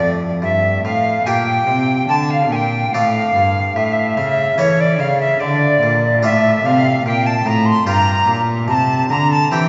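A bright, airy alto recorder carries the melody over a hollow concert flute's second line, with a plucked, Flemish-style harpsichord and a rich, bowed cello bass with portamento, all heard from the start in a dance-like, radiant baroque-style sonata movement at 72 BPM in 4/4 with rubato, tuned to A4 = 438 Hz, moving through chords from Gm to C in a wet church reverb with a faint mains hum, cut from a longer piece.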